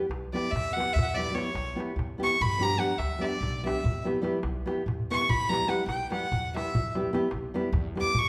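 Balkan folk in the manner of a wedding band, this restless, virtuosic excerpt moves in 7/8 as a single up-front fiddle carries a solo throughout, its bowing airy and earthy with light vibrato. A fingerpicked nylon-string guitar, deep and classical with audible finger squeak, accompanies over an Em to G and back harmony, while a woody, thumpy pizzicato upright bass on gut strings and a crisp, closely heard metal-shell darbuka played with soft hands fill out the rhythm, the drum adding a fill at 5.0 seconds. The band plays live together in one room, bathed in a lush large-studio reverb.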